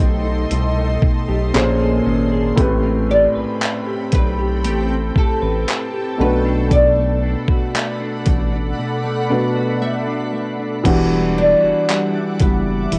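Late-night and sensual, this slow contemporary R&B piece at 58 BPM in E minor sets a woody, double-strung oud melody with analog delay over a felt-muted upright piano with audible action noise, clean electric guitar arpeggios, a rubbery square bass, a blurred granular cloud pad with sidechain pumping, and a glassy wavetable pluck with chorus tucked in the background. A gritty, compressed soul sampler-style drum kit with a thumpy kick, handclaps, hi-hat and crash enters at 0.5 seconds. The music then moves into a break from 8.8 seconds and resolves onto Em9 at 10.9 seconds, all wrapped in the warmth of a home cassette recording with light reverb.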